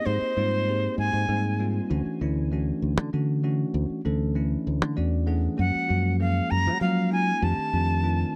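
A breathy, reedy jazz flute and a clean, bell-like tine electric piano open this bright, funky electric jazz fusion excerpt at 65 BPM in a straight 6/8, joined at once by a round, punchy fingered electric bass, with the vibrato-tinged flute falling away at 1.6 seconds while the piano carries the lush major-ninth harmony (G#maj9 to Dmaj9, later F#maj9 and F13), adds a fill at 4.7 seconds, and welcomes the flute back at 5.6 seconds, all in a dark, dry, up-front mix.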